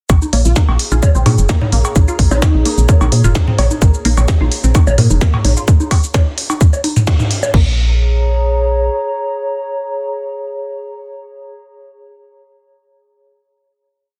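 A dense, heavily limited modern master with light reverb frames this cool, hypnotic minimal techno piece in Bb minor, running at 129 BPM in a straight 4/4 and resting on a Bbm7 chord. A tight, layered electronic kick pounds four-on-the-floor up front, while a woody, round FM bass rolls out a staccato groove from F1 to Bb2, pumping with sidechain. A minimal click kit adds clicky programmed hats, a tiny soft-clipped snare on the backbeat, cabasa and crash, and overdriven analog cowbell, congas, bongos and toms, re-recorded in a small room, scatter clicks and blips in cross rhythm. In the background a juicy, squelchy blip pluck with phaser and delay cycles a 10-step loop that drifts against the bar, and a punchy, catchy unison lead with vibrato offers short answering phrases between 0.5 and 2.7 seconds. Throughout, a warbling, nostalgic, lo-fi pad with chorus and ring modulation shifts slowly, and after a band accent at 7.1 seconds the drop gives way to the pad's final chord, which sustains until 11.5 seconds.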